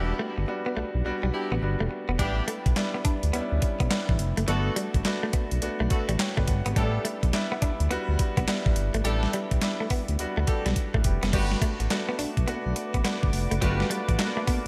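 An up-front, overdriven 8-bit drum machine with a thumpy kick and handclaps kicks in at 2.2 seconds to drive this slick, bouncy new jack swing excerpt at 105 BPM, over a dark, gliding synth bass, an intimate grand piano with a fill around 5.6 seconds, tight jazz-style horn stabs with delay, a clean, picked guitar riff with lush chorus, and a detuned, evolving pad that enters at 11.3 seconds, all in a bright 1980s-style digital production.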